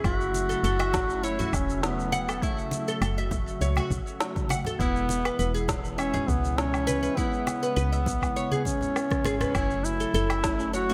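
A mystical, earthy organic downtempo excerpt opens with an up-front, folk-style duduk carrying the melody with vibrato and digital delay over a smooth, detuned analog pad with chorus and sidechain pumping, plectrum-plucked fretless oud arpeggios also touched by delay, a round, woody FM bass that pumps with the pad, an overdriven deep electronic kick, overdriven electronic woodblock, shaker, snare and rim click in gated reverb, and a very quiet, breathy wind-like tuned noise texture, while soft-handed congas join in the background at 0.3 seconds, a drum fill arrives at 9.0 seconds, and a dark, full-bodied chord stab with chorus and sidechain pumping enters at 10.4 seconds, within a moderate plate reverb and bright 1980s-style digital production.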